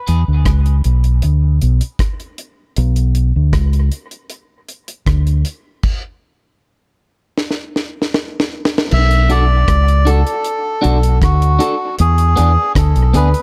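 A heavy, meditative dub reggae cut at 78 BPM in B dorian opens on a round, punchy fingered bass sitting up front with a deep, dry reggae kit marked by a high-tuned snare and tight kick, while a filter sweep colors a brief guitar stab through an echo-heavy small-room mix. The groove breaks into a stop at 5.8 seconds before a drum fill carries it to 8.9 seconds, where a reedy, breathy melodica with a vintage, band-limited tone takes the melody through dub echo over Bm7 and E7. At 9.3 seconds the slightly broken-up, compressed electric guitar returns quietly in the background, high-passed and trailing its own dub echoes.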